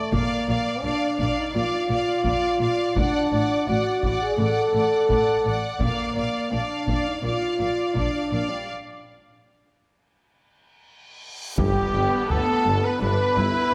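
A straight 84 BPM pulse in 4/4 from a taiko ensemble struck with heavy sticks drives this triumphant, adventurous cinematic orchestral cue, cut from a longer piece, where a focused, lush violin section sings the melody over a soft-edged second violin line, distant rich violas, dark background cellos and woody double basses beneath mellow, up-front French horn chords moving from Bb to D/A and back, until a break at 8.7 s opens onto a huge reverse cymbal and impact, and at 11.6 s a warm solo trumpet stabs on G with a clear tuba underneath, the whole scene set in a moderate scoring-stage reverb.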